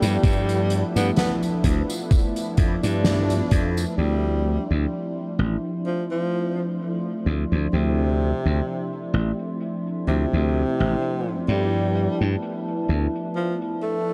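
Woozy and melancholic, this vaporwave fragment from a longer piece sets a clear, close-miked tenor saxophone melody, with vibrato, scooped notes and tape echo, over mellow, round synth brass bathed in lush chorus and a warbling, nostalgic tape-like pad sitting dark in the background. A bright, growly slap bass sits up front until 13.1 seconds, while a soft-mallet kit with a fat snare, filtered hi-hat and tambourine, and gated reverb carries the groove, joined by a thumpy, overdriven electronic kick only from 0.2 to 3.7 seconds. The band hits an accent at 3.0 seconds before shifting to a new section at 4.0 seconds, all wrapped in light small-room ambience and cassette-tape grain.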